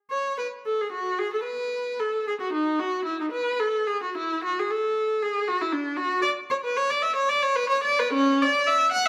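In 6/8 at 75 dotted-quarter beats per minute, with uneven, rubato-shaped beats, this brief cut from a baroque-style classical suite movement has a radiant, dance-like character in A major, tuned to A4 = 435 Hz. A single bowed viola plays alone from 0.1 to 9.1 s, ranging from C#4 to F#5 with a rich, smooth, even tone and vibrato. It sits up front in the mix within a moderate recital hall reverb of 1.4 s.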